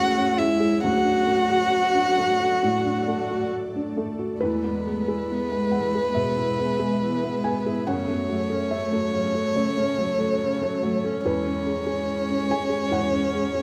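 A slow, longing neoclassical passage for piano and strings at 69 BPM, cut from a longer piece, opens with the whole ensemble together in an uneven, rubato pulse. A close, intimate violin carries the melody up front with light vibrato and airy sul tasto bowing, while a dark, woody cello sings a second line and a felt-muted upright piano, mellow and short-sustained with audible action noise, accompanies alongside a warm viola in the background. Behind them, an ethereal synth pad holds sustained chords, colored by ensemble chorus, phaser and its own built-in reverb, and the melancholic scene sits in a moderate large-studio reverb.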